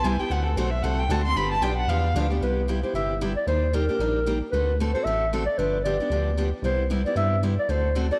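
A breathy clarinet carries the melody from 2.4 seconds in this swinging, playful stretch of acoustic string swing in C major at 227 BPM, its dark, vintage subtone colored by light vibrato, after a warm, bowed violin with portamento opens the cut with a solo as the second line over the guitar and bass. A bright, full-bodied picked steel-string acoustic guitar, finger squeaks audible, picks out the accompaniment up front, while a rubbery, hollow square bass with a bouncy filter pluck anchors the low end. Moderate echo-chamber reverb gives the whole ensemble a roomy air, and the excerpt is cut from a longer piece.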